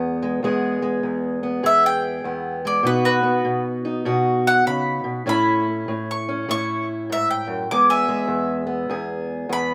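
A dark, boxy parlour guitar with old strings opens this fingerpicked acoustic country blues at 99 BPM, sitting up front with a swung eighth-note feel in E major as the chords move from E to B, A and back to E. At 1.7 seconds a warm, woody, double-strung mandolin enters up front, picking a soulful, swaggering melody above the guitar. The sound is dry and close, recorded outdoors, and the passage is cut from a longer piece.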